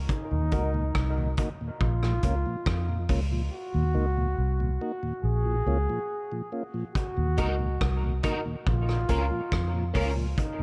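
A round, foam-muted electric bass opens this spacious, heavy dub reggae fragment at 70 BPM in Bb minor, soon joined by a gritty, saturated drum kit of kick, hi-hat and rim click, a bright trombone with light vibrato trailing dub echo, and a mellow tonewheel organ turning on a slow rotary speaker, while a dark, woody upright piano jabs in at 0.5 seconds and returns alongside a twangy, slightly broken-up electric guitar with chorus and echo at 7.4 seconds, all floating in an echo-heavy studio reverb over Ebm and Bbm.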